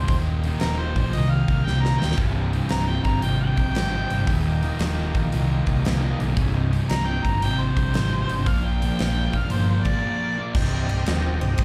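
Heard live through a club PA with only a touch of room reverb, this smoky, heavy cut from a longer blues rock and southern rock power-trio piece sets a distant, jazz-style harmonica solo, clear with light vibrato, scooped notes, overdrive, slapback echo and digital delay, over a dark, double-tracked fuzz guitar riff, an amped, overdriven fingered electric bass, a gritty tonewheel organ holding thick, chorused sustained chords with key click in the background, and a huge arena kit with a fat snare, punchy kick and bright cymbals that enters at 0.1 seconds, fills at 1.7 seconds and breaks at 10.0 seconds.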